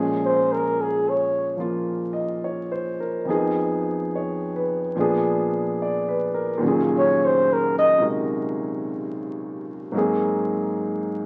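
Crackling like a very old 78 rpm record and steeped in a large studio's reverb, this smoky, melancholic jazz excerpt swings at 72 BPM in 4/4, with an intimate, up-front grand piano, its action noise audible, accompanying throughout as a mellow, close-miked flugelhorn offers brief vibrato-tinged solo phrases at 0.3 and 7.0 seconds.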